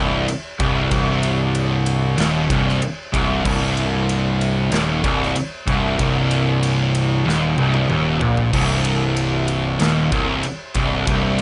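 Three picked electric guitars and a fuzz bass open together on a low riff in C minor, a hypnotic, ominous slice of stoner and doom metal cut from a longer piece, moving at a straight 94 BPM in 4/4. One thick fuzz guitar sounds dark and distorted, a second sits in the background with a warm fuzz tone, and a double-tracked raw garage guitar adds a bright, overdriven edge. The electric bass, recorded direct and amped an octave beneath them, is growly and fuzzed, its overdrive giving it a biting top. A big acoustic rock drum kit joins at 0.3 seconds in a studio room, pairing a boomy kick and medium-tuned snare with gleaming crash and ride cymbals, and a drum fill arrives at 7.3 seconds. The whole passage rests on a single C minor chord, with light reverb and a top end that stops short above 10.4 kHz.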